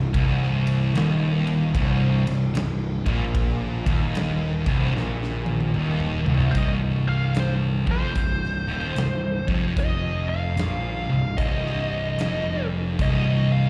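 Stoner and doom metal excerpt at a swung 75 BPM in C minor, heavy and brooding, where two thick fuzz guitars, one up front and one very quiet, join a bright, double-tracked distorted guitar in the background to grind out a low riff over a growly, overdriven fuzz bass and a big, dark, smooth acoustic drum kit with a punchy kick, until a drum fill ushers in a fuzz lead guitar melody with wah and slapback echo at 6.5 s as the background guitar stops at 6.6 s, the mix sounding like a live gig through a venue PA with recital-hall reverb.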